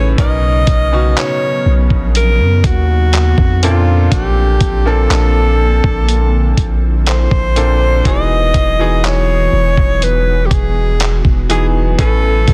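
Tender and smooth, this contemporary R&B excerpt moves at a slow 61 BPM in a straight 4/4, cut from a longer piece. A clear alto saxophone carries the melody in a jazz style, its subtone, vibrato and scooped notes trailed by delay. A bright, brilliant concert grand piano accompanies underneath, while an ethereal, airy pad hangs in the background with slow-attack chords colored by ensemble chorus, phaser and its own reverb. Up front, a deep, sine-like 808-style bass holds long decaying notes, joined at 0.2 seconds by a gritty, tape-toned sampler-style drum kit of thumpy kick, hi-hat and handclaps. The harmony drifts through major-ninth chords from Bmaj9 to A#maj9, Emaj9 and finally Amaj9, all inside a dry, dense and heavily limited modern master.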